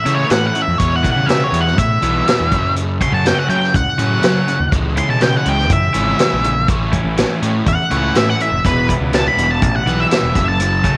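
A small room with light reverb frames this 11-second excerpt from a longer indie rock piece, which moves at 122 BPM in a straight 4/4 in A major with an upbeat yet wistful mood. Up front, a dark, octave-fuzz lead guitar plays a solo from 0.0 to 11.0 seconds, its distorted tone carrying a slapback echo as it ranges between B4 and C6. Beneath it, a crunchy overdriven guitar picks a low riff through an analog chorus, while a bright cranked stack guitar adds a second overdriven riff higher up. A growly, fuzzed-out fingered bass reaches down to E1. A vintage drum kit with a punchy kick, medium-tuned snare, hi-hat and a rolled-off top drives the band as the harmony cycles through A, Em, F#m and C#m before returning to A.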